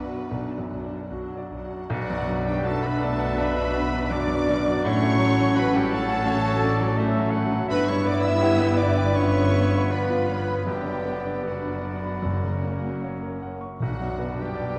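Unfolding in a rubato 4/4, this passage from a romantic movement for piano and orchestra carries a tragic, brooding mood. An intimate baby grand piano leads the melody up front, its long sustain and audible action noise giving it a natural presence, while a violin section shares the tune with focused, vibrato-rich bowing and a second violin section adds a very quiet, lush line in the distance. Violas supply expressive accompaniment with portamento, cellos and double basses anchor the bass, and a dark, soft-attacked French horn section holds sustained chords. From 1.9 seconds the woodwinds and brass join: a close-miked clarinet, a smooth oboe and an airy, hollow flute ensemble weave second lines in the background, a bright trombone section adds very quiet sustained chords, and a trumpet with light vibrato places gentle stabs. Timpani played with medium mallets on calf heads enter at 12.3 seconds as the harmony moves toward its closing cadence, all set in a wet concert hall reverb with a dark production.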